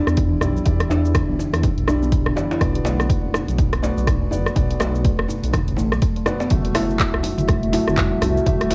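Swung sixteenths drive this hypnotic afro house excerpt, where a punchy, tape-warm electronic kick and a house kit of handclaps, hi-hat, rim click and shaker sit beside a background djembe struck with hard hands, while a buzzing, woody kalimba plays arpeggios and a soft, felt-muted upright piano adds intimate stabs, both pumping with echoing analog delay over a deep, rumbling detuned saw bass, until at 6.5 s a moody, chorused analog pad and very quiet, thick-skinned congas join across a dry, lo-fi cassette sound as the chords move from Em7 to Bm to F#m7b5.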